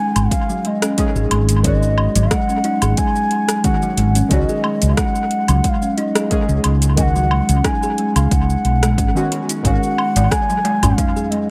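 Organic downtempo at 90 BPM in 4/4, this earthy, meditative passage cut from a longer piece moves with a gentle 16th-note swing under a light reverb and an echo-heavy digital ambience. A soft-attacked bamboo bansuri carries the melody with a pure, vibrato-laced tone, trailed by analog delay. A deep chord stab sits beneath it, wave-folded and dark, coloured with chorus, phaser, dub echo and sidechain pumping. Meanwhile, a woody, hollow-boxed kalimba plucks ringing arpeggios with a vintage, band-limited character. The round, amped fretless electric bass sits up front and pumps with the sidechain, while an overdriven electronic kick and a layered deep house kit with metallic hi-hats, rim click, shaker and woodblock keep a produced pulse threaded with dub echo. The harmony shifts from G#5 to C#sus4 and then C#sus24, and a crisp, metal-shelled darbuka played with soft hands slips into the background at 10.2 seconds.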